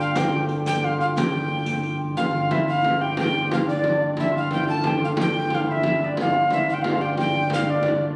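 A phone recording made in a concert hall gives this short medieval dance a wet, reverberant sound with a two-second tail. The mood is rustic and festive, moving in a lilting 6/8 at 120 dotted-quarter beats per minute with a straight feel. Up front, a mellow soprano recorder carries the melody with an airy tone, a crisp chiff and an unsteady, distant quality. Below it, a hammered dulcimer plays a shimmering, ringing second line, while soft flute stops on a pipe organ hold a romantic drone low in the range. A deep, large frame drum keeps the pulse from a roomy distance, and a riq with dark jingles sits in the background only from 0.2 to 1.9 seconds. The opening section gives way to a new section at 2.2 seconds, and the clip is cut from a longer piece.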